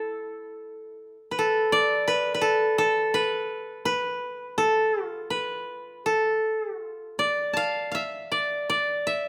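A solo koto, bright and woody, is played with fingerpicks up front in a dry, lightly reverberant space, carrying a calm, austere piece of Japanese chamber music at a rubato 77-85 BPM in 4/4, ranging from E4 to A5 and tuned to A4 = 439 Hz, across this 9.3-second cut from a longer work.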